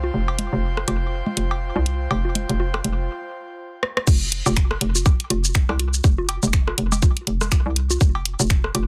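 A swung 4/4 groove drives this sparse, clinical minimal techno fragment, built on a hollow, bouncy FM bass with sidechain pumping and tape-tinged electronic congas, cowbell and rim click carried by digital delay. A breathy, chorused pad with sidechain pumping hovers above until 3.1 s. An overdriven garage kit of crash, finger snaps, hi-hat, rim click and shaker, with soft clipping on the snare, enters at 0.4 s under a filter sweep, and after a brief stop and a fill the drop lands at 4.1 s with a tight, overdriven electronic kick placed up front in a dense, heavily limited, dry mix.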